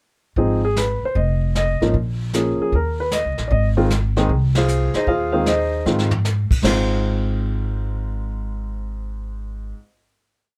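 A dry recording of a relaxed jazz piano trio in Ab major at 153 BPM with a swung feel: a present, polished baby grand plays a short-sustained bebop-style theme that returns, over syncopated drop2 comping; a woody, thumpy upright bass plays a two-feel line on gut strings; and a distant, roomy brush kit with dark cymbals sweeps the snare, joins a band accent at 4.5 seconds and plays a fill before dropping out at 6.8 seconds, leaving piano and bass to sustain the final chord, with the piano ringing until 9.8 seconds.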